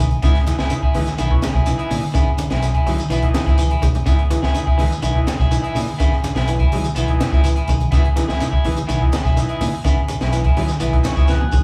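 Afrobeat with a funky, hypnotic feel, this excerpt from a longer piece rides a single C# minor seventh chord as two slightly broken-up electric guitars play, one twangy and set back playing arpeggios, the other picking stabs through spring reverb, over a fingered electric bass that sounds direct and amped. A compact cocktail drum kit with a tight kick, high-tuned snare and rolled-off top anchors the groove alongside bright, close, low-tuned congas and a grainy, band-limited shekere, while a buzzy combo organ with light vibrato fills in the harmony. The band plays live in one small room, and the drums break into fills at 3.5 seconds and near the close, where the organ adds its own fill from 10.8 seconds.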